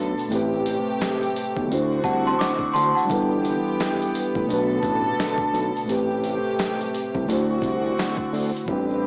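Heard through a small speaker with vinyl crackle and the murk of a home cassette recording, this short cut from a longer lo-fi hip hop piece settles into a melancholic, hazy mood at 86 BPM in 4/4, with a 62% swing on the sixteenths. A mellow tine electric piano carries the accompaniment through cassette tape and plate reverb, while a dark studio string section holds sustained chords with light vibrato and a reedy, gut-string tone. A fat analog bass with a detuned sawtooth edge anchors the low end, and a dusty soul sampler-style drum kit brings a thumpy kick, a gritty compressed snare and hi-hat, with a grainy tube shaker sitting in the background. Between 2.0 and 3.3 seconds a slightly out-of-tune celesta adds a bell-like, delicate second line through tape echo and plate reverb. The harmony cycles through Am7, D7, G6 and Bm7 before returning to Am7 and D7, and the hi-hats fall silent from 8.7 seconds as the clip closes.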